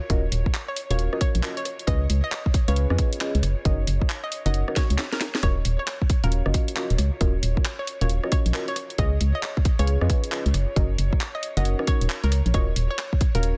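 A dense, heavily limited modern mix with little reverb carries this soulful, bouncy excerpt of two-step UK garage, swung on the sixteenths. An organ-like FM bass sits up front with a dark, percussive tone, beside a tight, tape-warm electronic kick. A layered garage kit adds handclaps, rim clicks, hi-hats and a cracking snare with soft clipping, and a drum fill breaks in at 4.8 seconds. Deep, nasal chord stabs with chorus and delay fill the middle, while a bright, detuned square-wave pluck carries the melody from 0.7 seconds. Behind them, an airy, breathy pad with a warbling vintage character holds sustained chords and pumps with the sidechain.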